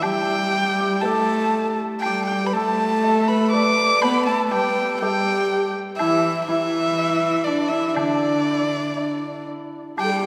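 A rich, up-front erhu carries the melody from D5 to D6, its one bowed voice marked by light vibrato, soft attacks, portamento and an airy bow heard close and intimate. This Chinese chamber ensemble piece in the D zhi mode moves at an unhurried 60 BPM in a straight 2/4, with a pastoral yet festive mood. Beneath it, a breathy, mellow bamboo xiao sounds a low second line with vibrato and crisp attacks, while a bright hammered dulcimer adds shimmering, ringing notes. A warm cello, bowed sul tasto with light vibrato, lays down a nasal, boxy low line up front, and a very quiet woodblock, close and dry, adds a soft percussive touch. The whole ensemble plays throughout this roughly 10-second excerpt cut from a longer piece, set in a church or concert hall with a 3.0-second reverb tail.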